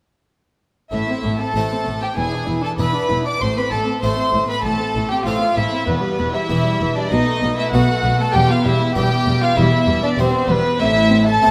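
Baroque-style concerto movement in A minor at 97 BPM, driving and stormy, where a close, up-front violin section carries the melody with light vibrato over a rich second violin line, a nasal viola section, a background Flemish-style harpsichord with a full two-string-set sound, and a bass of dark cello and rich double bass sections, all bowed strings sharing a reedy gut-string period tone in a moderate scoring-stage reverb, heard as a cut from a longer piece running from 0.9 to 11.5 seconds.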